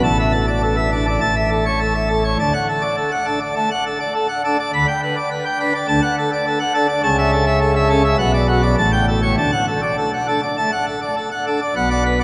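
A steady, straight four-beat pulse drives this brilliant, majestic classical organ toccata, cut from a longer piece. A single pipe organ on full plenum carries everything alone from 0.0 to 12.2 seconds, its mixtures giving a bright, baroque voicing with audible chiff at the start of each pipe's speech. Sitting up front, the organ ranges from deep tones around A1 up to B5, filling the space with a grand, full sound. A cathedral reverb with a long 6.4-second decay surrounds the instrument, letting each chord bloom and hang in the vast room. The harmony moves from a suspended opening through a bold cadential progression and comes to rest on a resolving tonic chord near 9.4 seconds.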